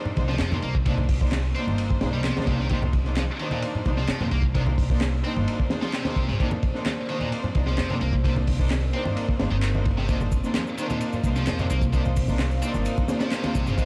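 A dark production with light reverb and a haze of vinyl crackle frames this funky, energetic breakbeat cut from a longer piece, moving in a straight 4/4. Up front, a crunchy, saturated acoustic drum kit drives the groove with a tight kick, a high-tuned snare, dark cymbals and a rolled-off top. Overdriven analog handclaps and shaker, re-recorded in a large room, sit beneath it, while ringing, close congas played with hard hands stay in the background. A woody pizzicato upright bass anchors the low end, and a scooped, high-gain electric guitar, bright and double-tracked, plays a picked riff through distortion and digital delay. A distant, biting bowed string section adds lush, intense stabs with vibrato and delay. At 5.3 s a deep, moody ambient pad enters in the background, its detuned sawtooth voices warbling with chorus, reverb and sidechain pumping as it holds slow-attack chords.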